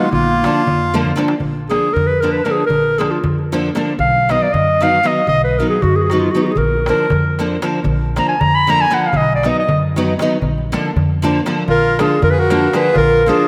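A dreamy mix soaked in lush hall reverb carries this bittersweet, fiery Balkan wedding band excerpt at 233 BPM in 5/8 and Bb phrygian dominant, where a close-miked, classical-style clarinet up front takes a solo from 1.4 to 11.7 seconds over chords swaying between Bb and B, a bright fingerpicked nylon-string guitar with analog chorus, thumpy pizzicato upright bass, and a crisp metal-shell darbuka played with hard hands that drops in a fill at 0.9 seconds, while a clear, reedy accordion sounds briefly at the opening and returns at 11.7 seconds.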